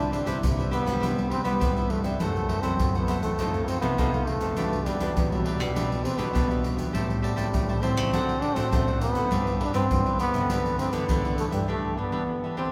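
A clear, vintage-toned trombone leads this playful, festive samba and choro passage in G major at 101 BPM, playing a jazz-style solo melody up front. A crisp, picked cavaquinho and a full-bodied, fingerpicked classical nylon-string guitar supply the accompaniment over a Cmaj7 to G6 progression, while a darker nylon-string guitar holds the bass in the background and tube shaker, pandeiro and deep surdo, played with hard hands, drive the groove. All sit in a church-like cathedral reverb, and the bass and percussion drop out at 11.7 seconds for a brief break before the cut at 12.7 seconds.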